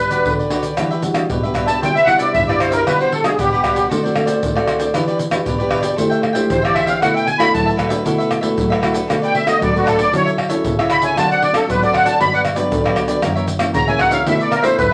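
A wet studio room with a half-second ring frames this lively, playful samba and choro excerpt in E minor at 116 BPM, where a reedy, shimmering musette accordion carries the melody up front and solos from 0.8 s over crisp, picked cavaquinho, a fingerpicked nylon-string guitar with fresh strings and a deep classical tone, and up-front, compressed, saturated percussion of egg shaker, pandeiro, tight surdo and tamborim.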